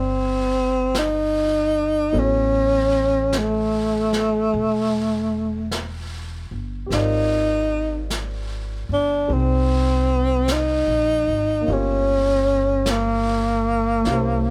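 A slow, swung 4/4 pulse at 50 BPM carries this smoky, intimate jazz ballad, cut from a longer piece. A breathy, whispered tenor saxophone leads up front with subtone, vibrato and scooped notes in plate reverb. Beneath it sit a woody, thumpy pizzicato upright bass and a warm baby grand piano in the background, while a distant, roomy brush kit of snare and hi-hat joins at 0.9 seconds, all within a lightly reverberant space.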